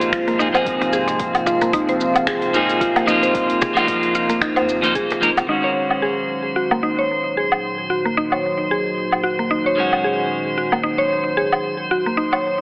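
Heavily compressed, AM-radio-style sound bathed in a wet concert-hall reverb frames this meditative, hypnotic organic downtempo clip in Eb dorian at 112 BPM, with a 16th-note swing. Up front, a bright, twangy clean electric guitar with sidechain pumping and digital delay sits beside a woody, mallet-like FM synth pluck playing arpeggios, while a smooth, warbling vintage pad, a glassy texture of drifting overtones and an afro-pop kit of finger snaps, metallic hi-hat, shaker and woodblock fill out the sound. In the background, a round, dark analog bass, a deep electronic kick and a snappy acoustic cajon drop away by 5.5 seconds, when the chords move from Fm/Eb to Ebm and a filter sweep begins on the guitar.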